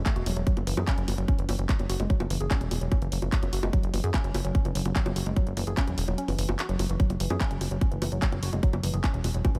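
A dry cut from a longer psychedelic trance piece moves at 147 BPM in a hypnotic, intense mood, driven by a tight, up-front electronic kick and a layered garage kit of bongos, handclaps and hi-hat, while a punchy, funky analog bass with tube saturation and a woody, mellow wave-folded pluck riff with chorus, tape echo and sidechain pumping fill out the groove, and the kick briefly drops away from 6.2 to 7.0 seconds.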